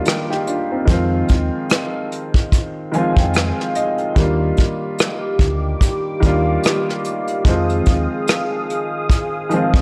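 Swung sixteenths at 73 BPM in 4/4 carry this dreamy, mellow lo-fi hip hop excerpt. An up-front brushed drum kit with a tight kick, hi-hat and rim clicks plays alongside a woody, slightly detuned, filtered upright piano that plays a fill from 2.5 seconds, while a dark, round dub bass enters at 0.9 seconds and a smooth, chorused sawtooth pad arrives at 4.2 seconds over Ebmaj9 and Fm7 chords, all with light small-room reverb and cassette tape character.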